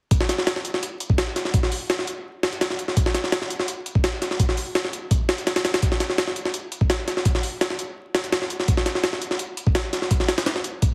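Dark and atmospheric, this drum and bass excerpt runs at 168 BPM in a straight 4/4 feel, carried entirely by a jungle sampler-style drum kit. The kit plays from 0.1 to 10.9 seconds, built from hi-hat, kick drum and snare drum, with a thumpy kick and a high-tuned snare sitting up front. Its sound is compressed and pitched up, gritty and tape-warm, with the character of having been re-recorded in a large room. Light reverb surrounds the recording, which carries a heavily compressed radio quality and a bed of vinyl crackle. The whole passage forms a single section, cut from a longer piece.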